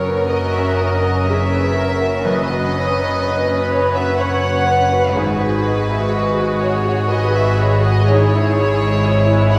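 From the first moment, a string ensemble and a bright baby grand piano sound together in a moving, sorrowful cinematic passage in 3/4 with a rubato feel, cut from a longer piece. Violins carry the melody above a second violin line, while dark violas and the brilliant piano fill the accompaniment and cellos and double basses hold the bass; all the strings are bowed sul tasto with soft attacks and a pure, floating tone. A wet concert-hall reverb surrounds the sound, with the violins heard close and the cellos more distant.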